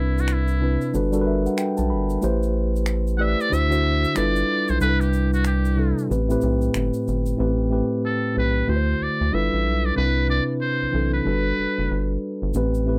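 A dry, close 1970s-style studio sound frames this smooth, late-night neo-soul R&B excerpt at 93 BPM in A dorian with a swung 16th feel, where a buzzy metal-muted trumpet with slapback echo and vibrato takes a solo through the first 7.4 seconds over mellow tine electric piano chords and fills, a rubbery, hollow square bass, and soft egg shaker and finger snaps.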